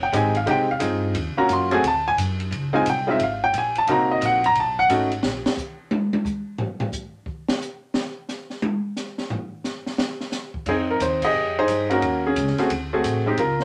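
A bright, intimate upright piano with audible action noise opens this cool, moody F minor jazz trio fragment at a swinging 177 BPM, stating the melody over Fm9 and descending chords while a woody pizzicato upright bass and an open drum kit with dark cymbals, a high-tuned snare and a boomy kick support it. At 5.2 seconds the harmony drops away and the drums take a solo in the small, moderately reverberant room. Piano and bass return at 10.7 seconds over Fm9, Ebm7 and D7#11, with the full band hitting an accent at 11.2 seconds.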